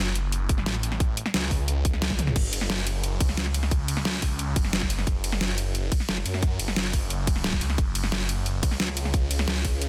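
Mechanical and futuristic, this brief cut from a longer dark technical drum and bass track in F# minor drives at 177 BPM, with a swirling, thick phased detuned saw bass pumping under tube saturation alongside an overdriven dubstep drum kit of deep snare, bright hats, crash, ride and toms that rolls into a fill at 2.1 seconds, while a tight, tape-warm electronic kick punches up front in a dense, heavily limited digital ambience.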